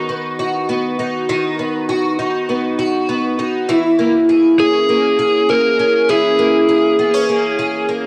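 An overdriven electric slide guitar sits up front with a short melody from 4.6 s, its tone coloured by cassette tape and plate reverb. Alongside it, also up front, a picked twelve-string acoustic guitar plays shimmering, octave-doubled arpeggios from the start, bright and slightly boxy, treated with analog chorus, tape and delay over B/D# and A#m7b5 chords. This ethereal, hazy dream pop piece moves at 100 BPM in 4/4, cut from a longer work, with a light-reverb home cassette sound.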